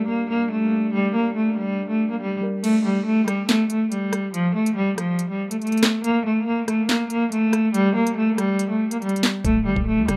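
A biting, nasal cello carries the melody up front throughout this cold, ominous half-time drill fragment, its airy bow and light vibrato softened by a low-pass filter and trailed by digital delay. For the opening 2.6 seconds, very quiet, warbling felt-like synth keys and a glassy, ethereal glass harmonica sit under it over a G minor chord, before an overdriven electronic drill kit of sharp snare, crisp hats, handclaps, rim clicks and crash enters with its knocking kick held back until 9.4 seconds, when a growling, buzzy 808-style bass also arrives. The rough home demo mix is dry, with little reverb.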